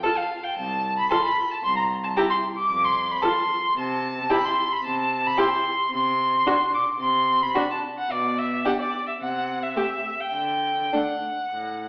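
A clear, focused first violin leads with vibrato-laden melody high in its range, sitting up front yet with a distant quality, carrying this spirited, graceful fragment of a quick classical-period movement for string quartet. The time feels elastic and rubato in 4/4. Beneath it, a second violin with vibrato traces a second line in a lower register, while the viola adds expressive accompaniment with portamento and vibrato from a distant vantage; both stop at 11.0 seconds, and both share a rich tone. The cello enters at 0.6 seconds with a rich, smooth, even bass line, sounding close and staying under the rest of the quartet until the end. The harmony moves through F and Am/C, with stretches where the chords go unstated, and closes on D. A wet recital-hall reverb places the players further back in the room, and the whole recording has the thin, boxy colour of AM radio.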